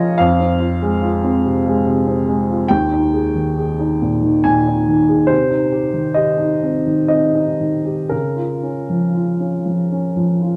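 A dark, softly reverberant production frames this brief excerpt of neoclassical minimalist piano, intimate and reflective in F minor. A lone upright piano, woody and polished with long sustain, sits up front and plays in a rubato 3/4 around 58-72 BPM, ranging from Eb2 to Ab5. It moves through Fm, Ebsus4, Cm and Bbm/Db across about 10.6 seconds, tuned to A4 = 439 Hz.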